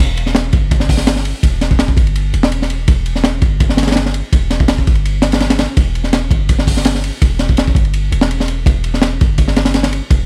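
Drum and bass with a jungle edge at 166 BPM in E minor, this atmospheric, nostalgic excerpt from a drop sets a crunchy, gritty breakbeat kit with a high-tuned snare, tight kick, hi-hat and ride up front over a deep, boomy 808-style sine bass given tube saturation and a noise layer, all dry and dusted with vinyl crackle.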